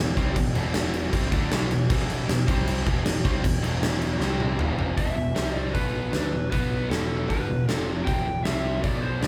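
Hard rock, menacing and aggressive, cut from a longer piece, where a bright cranked stack guitar and a warm overdriven guitar play a low riff in the background over a growling, overdriven picked bass, driven by a huge, up-front arena drum kit with a fat snare, punchy kick and bright cymbals that enters at 0.2 seconds and fills into a dark, lo-fi lead guitar melody from 5.0 seconds, all played live together in one large room.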